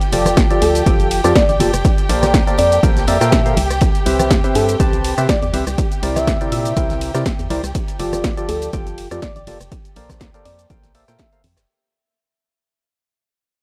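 Piano house at 122 BPM with a lightly swung, euphoric feel-good drive, built on a punchy, up-front electronic kick and a room-recorded analog drum machine of hi-hat, ride, rim click, shaker and snare, with a distant, roomy soul kit and close, very quiet tambourine and congas beneath, while a hollow, pumping FM bass and a mellow, chorused organ stab with analog delay carry the F69, Bbmaj9, Cmaj7 and C9 changes, a dark, woody violin section sustains bowed chords with vibrato, and a round, gentle, detuned synth lead with tape-tinged chorus plays a keys-like melody as the cut fades out from 3.8 s to 11.7 s.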